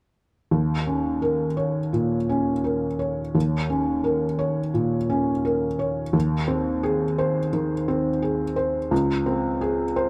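Melancholic and longing, this short classical fragment, cut from a longer piece, moves at 86 BPM in 4/4 with a rubato feel. A felt-muted upright piano plays from 0.5 to 10.1 seconds, its soft, mellow, intimate tone sitting up front with audible action noise. Close, detailed microphones and light reverb keep the sound natural as the harmony touches Ab over Eb at 6.1 seconds.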